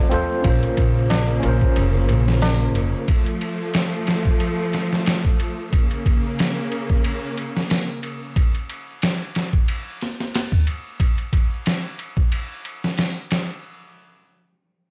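A dry, gritty hardware recording with little reverb opens this melancholic, smoky trip hop excerpt at 91 BPM in Bb harmonic minor, with a lightly swung 16th-note feel. A barky, overdriven tine electric piano through a combo amp, treated with tremolo and tape echo, plays accompaniment over a lush, bowed string section holding sustained chords. Meanwhile an up-front pizzicato upright bass with a woody, tube-saturated tone and a faint, ringing, high-tuned tabla appear briefly near the start. The compressed, pitched-down sampler-style drum kit, with its thumpy kick, medium-tuned snare, hi-hat and ride, plays alone once the strings stop at 8.3 s, running to 13.5 s after harmony moving from Bbmadd9 to F and Bbm.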